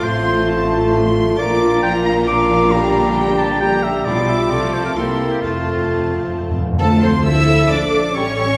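Heard in a reverberant concert hall, this brief cut from a quick, restless classical-period movement in F major moves at 134 BPM in 3/4, with a rich, vibrato-laden violin section carrying the urgent melody high above a clear oboe, a very quiet mellow clarinet, a pure silver flute and a second violin section playing soft, intimate sul tasto lines. Beneath them a vintage-toned bassoon and a lush viola section supply accompaniment, a dark, distant French horn section holds sustained chords, and a focused double bass section anchors the bass alongside a warm, smooth cello section. Soft-mallet timpani with a round calf-head tone enter with a fill at 5.4 seconds, leading into a new section that turns toward D minor at 6.8 seconds.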